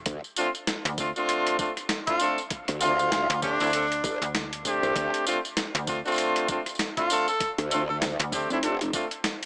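A snappy, metallic FM slap bass sits on D2 from the very start of this short glitch hop excerpt in D minor, moving at 98 BPM in 4/4 with a 16th-note swing of 59%. Almost at once a growling, wobbling bass joins underneath, ranging from F1 to D2, distorted, chorused and tube-saturated, alongside an overdriven sampler-style boom bap kit of hi-hat, rim click, medium-tuned snare and tambourine, layered with a knocking electronic kick. A tight, up-front horn section adds stabs between A3 and A4 from 0.4 seconds, smoothed at the top with light vibrato yet roughened by vintage 12-bit grit, sidechain pumping and dub echo. At 2.1 seconds a close-miked tenor saxophone takes the melody between D4 and A4, with vibrato and its own dub echo, until 8.0 seconds. The whole passage rests on a single Dm7 chord, and light digital ambience with a small-speaker colour gives it a playful, gritty mood.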